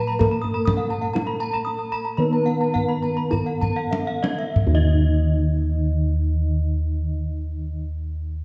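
Bossed bronze gongs stand out most, sitting up front with a round, beating tone and a boxy small-room quality. They carry the bass line beneath a shimmering, brilliant passage of Balinese gamelan in straight 4/4, cut from a longer piece. The melody comes from a bronze metallophone struck with padded disc mallets, mellow and smooth, with a tape echo. Another metallophone supplies the accompaniment lower down with a soft, vintage, band-limited colour. Above them, two bright metallophones played with horn mallets ring out arpeggios, the paired tuning producing shimmering beats, one of them notably airy. A kendang adds deep, soft-handed percussion, its drum fill arriving at 3.3 seconds while the opening stretch slows down until 4.6 seconds; the drum falls silent at 5.2 seconds as the ensemble rings on in a dark production with a moderate scoring-stage reverb.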